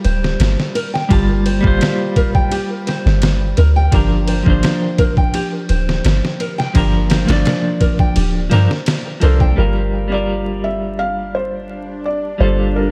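A deep, round 808-style bass sits up front in this hypnotic, dark trip hop excerpt, its soft sine tone striking quickly and then decaying beneath a slow 85 BPM groove in G minor. Gritty, compressed sampler-style drums, pitched down with a thumpy kick, a medium-tuned snare and ride cymbal, carry a tape-saturated feel in studio reverb. Alongside them a clean, picked electric guitar plays accompaniment through tremolo, a low-pass filter and tape echo, while a small fingerpicked nylon-string guitar spins arpeggios roughened by 12-bit sampler grit. The harmony moves from Gm9 to Bb and back. Drums and nylon guitar drop out at 9.6 seconds, shortly after a felt-muted upright piano enters at 9.2 seconds with an intimate, mellow melody, its action noise audible and its notes brief under tape echo. At 10.9 seconds a tense, string-like drone with a sawtooth edge, vibrato and phaser swells in slowly over the dark, warm production, all of it wrapped in vinyl crackle.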